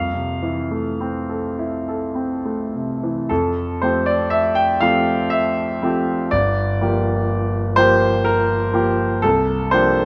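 Close, detailed microphones capture a clear, open concert grand piano placed up front, its deep bass ringing into a moderate concert-hall reverb. This short fragment of impressionist classical solo piano drifts in 3/4 at a slow, rubato 50 to 63 BPM in F major, with a dreamy, luminous mood. The piano plays alone across a range from G1 to G5, moving through Fmaj7, Fadd9, Gm7 and C11 harmonies, and its opening idea returns at 3.3 seconds.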